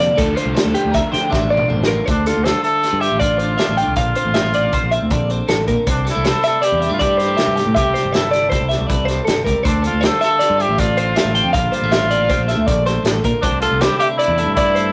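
A rough rehearsal-room recording with warm saturation sets this wistful, intricate math rock and midwest emo excerpt in a moderate stone room reverb, moving at 158 BPM in a straight 5/4 in D minor. It opens on a double-tracked overdriven electric guitar riff, carrying spring reverb and sitting in the background, while a loose, acoustic indie drum kit plays up front and rolls into a fill from 1.3 seconds. At 2.1 seconds the riff drops away and a clear, vintage-toned trumpet takes the solo melody up front, its pop-style lines carrying a light vibrato and scooped notes. Beneath it, one bright, twangy twelve-string electric guitar picks clean, compressed accompaniment, and a second twelve-string adds high arpeggios further back. A growling fingered electric bass with overdrive gives a gritty, punchy low end, and the small-room drums add a medium-tuned snare and toms, all circling through Dm9, Bbmaj9, C69 and Am7 before the passage is cut off.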